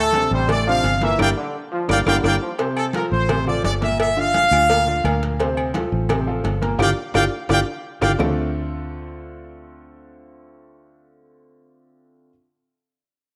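A fiery, danceable salsa in D minor at 172 BPM opens with a bright, tight trumpet section carrying the melody up front, a punchy trombone section beneath it that drops out at 2.5 seconds, clear short-sustained concert grand piano, and a dark, round fingered electric bass. Congas, cowbell and bongos, ringing agogo bells and timbales, and woody claves sit in the background, with band accents and drum fills marking the ends of phrases, all within a moderate echo chamber reverb. The trumpets and percussion stop by 8.3 seconds, leaving piano and bass to carry on alone until 12.3 seconds in this cut from a longer piece.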